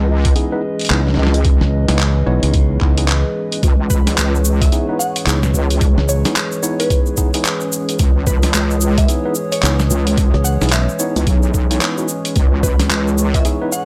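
A dark analog pad and a warbling, lo-fi tape-like pad open this funky, gritty glitch hop excerpt at 110 BPM in C# minor, both pumping under sidechain over a heavy, saturated wobble bass that sits up front on a single C#m7 chord. A thumpy, pitched-down kick and a sampler-style boom bap kit of handclaps, hi-hat and medium-tuned snare swing along, while a worn, slightly out-of-tune tine electric piano adds overdriven stabs with analog delay and a bright fingered electric bass punches in from 0.9 to 6.2 seconds and again briefly. A grainy tube shaker joins at 3.6 seconds and a woody, mellow wave-folded pluck carries the melody in the background from 3.9 seconds, all held in a dry hardware sound with transformer grit and light digital ambience.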